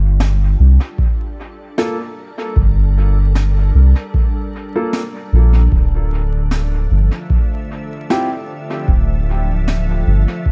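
A pure, organ-like pad with ensemble chorus and built-in reverb fades in over a round, tube-saturated sub bass sitting up front, opening this meditative, hazy ambient dub fragment as a brushed snare trails dub echo, a deep analog kick arrives at 1.0 s, and a dark, woody upright piano with 12-bit sampler grit and its own dub echo plays stabs from 1.8 s to 8.3 s, the harmony shifting from Gm9 to Dmadd9 inside a small, echo-heavy room dusted with vinyl crackle.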